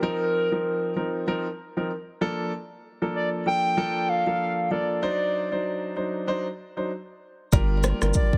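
Afrobeats at 96 BPM with a hypnotic, mellow swing, where a hollow, clarinet-like synth lead with chorus and delay carries the melody over polished grand piano chords moving from F7sus4 through Bbmaj7 and D7b9, until at 7.5 seconds a saturated sub bass, a deep house kit of deep kick, rim click and shaker, and a brief woody kalimba riff in the background arrive on Gm7, with very quiet ringing congas joining at 7.8 seconds, all within a dense, heavily limited master with light small-room reverb.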